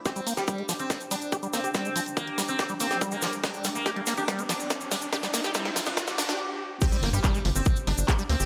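Psychedelic trance in a hypnotic, alien mood, this fragment of a longer piece opens with a build-up in which a buzzing, plectrum-plucked sitar carries the melody through phaser and dub echo while a squelchy, resonant liquid acid bass riff undergoes a filter sweep. Around them sit a dark, warbling lo-fi pad, a tight, up-front electronic kick, a garage kit with cracking snare, handclaps, hi-hat and crash playing a drum fill, and a grainy tube shaker, with a background riser climbing from 2.0 seconds. After a brief stop at 6.4 seconds, the drop lands at 6.8 seconds with an impact, and a punchy sawtooth sequencer bass drives in shortly after.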